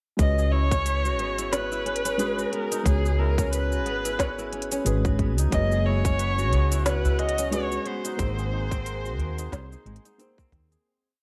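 Dark, warm production with light small-room ambience frames this mystical organic downtempo piece at 90 BPM in C# dorian, swung on sixteenths and moving from C#m7 through F#7sus4 to G#7 before a fade-out from 7.3 seconds. An overdriven electronic kick and a layered kit of woody snare, crisp hi-hat and shaker anchor a growly, round fretless electric bass playing a dub-style line up front with sidechain pumping. Meanwhile a felt-muted upright piano pumps soft, boxy quartal chords with syncopated pushes, a fingerpicked kora rings out a repeating sixteen-step pattern through tape echo, and a clear, bowed kamancheh carries arch-shaped motifs with vibrato and portamento, also through tape echo. A glassy harmonics texture drifts in the background, and a warm, detuned analog pad with chorus and a deep, dry udu join at 5.5 and 6.5 seconds.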